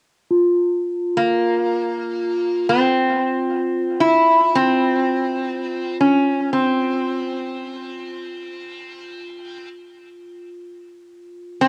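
A dark, smooth bronze singing bowl struck with a suede striker rings from 0.3 s with slow beating and cassette grit, and at 1.2 s an up-front, nasal resonator slide guitar played with fingerpicks enters with a metallic, haunting melody in free time through tape echo, giving this meditative world excerpt the intimate feel of a home cassette recording in a small, wet room.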